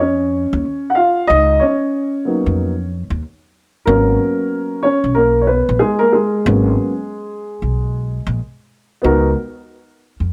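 A dark, boxy upright piano and a pizzicato upright bass open this cool, mellow jazz-hop excerpt at 93 BPM, swinging over C#sus4 and G#m11 chords as the piano carries a solo until 9.0 seconds. Both instruments sit up front, the bass woody and warm, within a moderate echo-chamber reverb. The piano drops out at 9.3 seconds on a C#13sus4, leaving the bass alone until 10.3 seconds.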